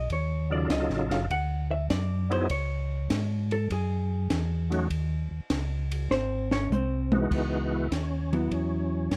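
Soul jazz organ trio with a late-night, soulful mood and a swung feel, built on a round, mellow tonewheel organ bass with chorus vibrato and slow rotary speaker, while a percussive tonewheel organ carries the melody from 0.5 seconds with a thick, lightly overdriven tone and its own slow rotary swirl. A dark, clean hollow-body jazz guitar takes a fingered, compressed solo from the start until 7.3 seconds, and a compact cocktail kit with a high-tuned snare, tight kick and rolled-off top adds a drum fill from 6.1 seconds. The close, dry sound keeps every part up front as the chords move through C#m and G#7 before settling on C#m11 at 7.3 seconds.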